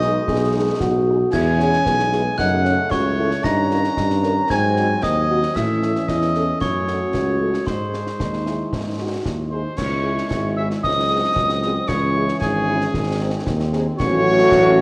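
The recording sits in the wet reverb of a scoring stage, heard through worn, warbling cassette tape whose pitch drifts. It is a stern, martial wind-band march in 2/4 at 114 BPM, cut from a longer piece, with a straight feel and chords moving from G#m/B through E, F#m and G#7 before turning toward C#m. A clear, smooth-topped cornet carries the melody up front, over a mellow tuba bass that is equally forward and has a light vibrato. Behind them, a mellow French horn section fills in the accompaniment, and a dark, distant trombone section holds very quiet sustained chords. A warm euphonium and a metallic, bell-like glockenspiel played with hard plastic mallets add second lines until the glockenspiel ends at 9.2 seconds and the euphonium at 9.8 seconds. A bright, pure wooden piccolo enters at 9.5 seconds with tongued, vibrato-tinged notes, while the close, dry concert snare, bass drum and dark clash cymbals keep the march going throughout.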